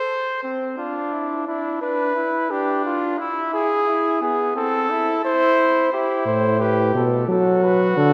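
A mellow trumpet with light vibrato carries the melody from 0.8 seconds, entering over a clear, smooth-topped second trumpet that opens the excerpt alone in this imitative classical canzona for brass. At 6.3 seconds a bass trombone, also with light vibrato, joins underneath as the bass. Each instrument sits up front in a wet church reverb, giving the music a driving yet contemplative character.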